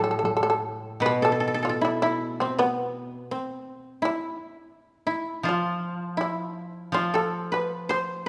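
A rubato pulse in 2/4 drifts between 76 and 88 BPM in this austere, solitary excerpt of Japanese traditional music in A hirajoshi. A plectrum-plucked, fretless shamisen carries the melody up front with a buzzing, percussive bite. One koto, mellow and woody, adds a second line in the same register, while another, bright and dry, plays the low accompaniment. All three sound together inside a moderate recital hall reverb, the shamisen falling silent at about 8.2 seconds and the two kotos at about 8.3.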